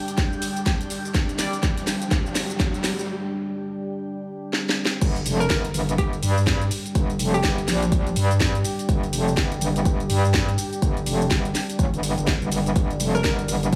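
Bouncy, aggressive bass house at 124 BPM with a swung groove, this cut opens with a build-up in which a deep, moody ambient pad with vintage sampler grit and a filter sweep sits under an airy, breathy pad, a background riser, a brief distant horn stab and a drum fill from the punchy kick and house kit with its cracking snare and metallic hats, then drops at 5.0 seconds into a saturated, metallic wobble bass with sidechain pumping, while a hollow, detuned square pluck with tape echo returns at 5.4 seconds.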